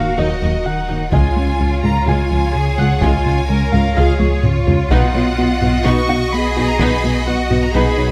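A smooth, gliding synth bass riff with portamento anchors this vast, futuristic stretch of hybrid orchestral and electronic film score, cut from a longer piece and moving at 127 BPM in a straight 4/4. Above it, a clear symphonic violin section and a soft, keys-like FM synth lead with chorus and delay carry the melody together, while a rich chamber violin section sings an expressive second line. A round pluck with chorus and delay spins arpeggios in the background. A close, focused viola section adds accompaniment, and a very quiet French horn section holds sustained chords. A distant, lush cello section, a distant double bass section and a deep sine sub bass fill the low end, while a dark, intimate baby grand piano with audible action noise and delay adds texture in the background. Heavy-stick taiko drums enter at 1.1 s and play a fill at 4.2 s, over harmony that moves from Ebm to Db and then to B at 4.9 s, all captured with close, detailed microphones and light reverb.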